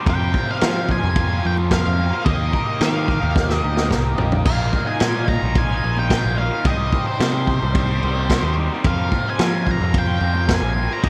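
Straight 4/4 psychedelic rock with a trippy, mysterious mood, this excerpt pairs a vintage drum kit, up front with dark cymbals, a punchy kick, dub echo and a fill at 3.4 seconds, with a bright, direct picked bass; a double-tracked crunchy guitar riff treated with phaser and dub echo; an octave-fuzz lead melody, distorted and echoed; a very quiet buzzy combo organ holding sustained chords with light vibrato; and faint, ringing high-tuned congas, moving through Fsus4, Ebmaj7, Bbsus4 and Cm7 in a dry, echo-heavy mix.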